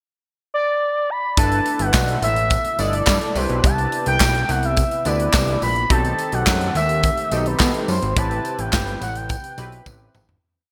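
Smooth and feel-good, this early-eighties boogie funk piece opens with a dark, expressive sawtooth synth lead singing motif-based phrases over a brief pickup bar, before a four-on-the-floor beat from a polished, airy studio kit with gated reverb, tight kick and a snare layered with handclaps arrives at 1.4 seconds. A fat, saturated analog bass drives a syncopated line with chromatic approach notes, while a glossy chorused polysynth pushes rootless chords, a very quiet brassy pad sustains underneath, and a jingly tambourine sits in the background on the backbeat. The bright, lush digital-era production carries the verse through chords like G69 and Cmaj7 into a fade-out from 8.2 seconds, capped by a closing drum fill.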